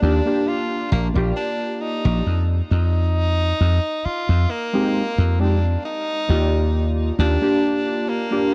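Vaporwave at a slow 67 BPM in straight 4/4, this short excerpt from a longer piece feels hazy and nostalgic, tuned slightly below standard pitch. A clear, present tenor saxophone carries the jazz-style solo melody between Bb3 and F4, its notes trailed by tape echo and sitting back in the mix. Warbly lo-fi synth keys fill in the accompaniment from Ab3 to D5, blending detuned square, sawtooth and triangle tones with a noise layer, fast-attack decaying notes and a subtle chorus that gives them a mellow, airy glow. Underneath, a dry thumbed slap bass sits up front, bright and punchy with a foam-muted electric tone, moving between Bb1 and F2 before stopping at 7.4 s while the other parts continue to 8.5 s. The harmony moves from a rootless Ebmaj7 to Fm9 at 2.3 s and back to Ebmaj7 at 5.8 s, all wrapped in light reverb, studio ambience and the soft grain of cassette tape.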